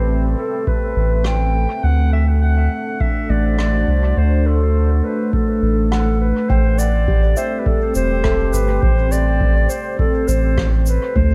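A dark, detuned ambient pad, a ringing handpan played with the fingertips through tape echo, and a round, up-front sub bass with tube saturation open this spacious, deep ambient dub excerpt at 103 BPM in A dorian, moving from Am9 to D7. A mellow, distant clarinet takes the solo melody with dub echo from 0.4 seconds, and an analog, tape-warm electronic kick enters at 0.7 seconds, followed by a roomy rim click and shaker played with brushes and treated with dub echo. At 6.5 seconds the harmony settles on Am7, and the piece sits in a small room ambience with moderate echo-chamber reverb.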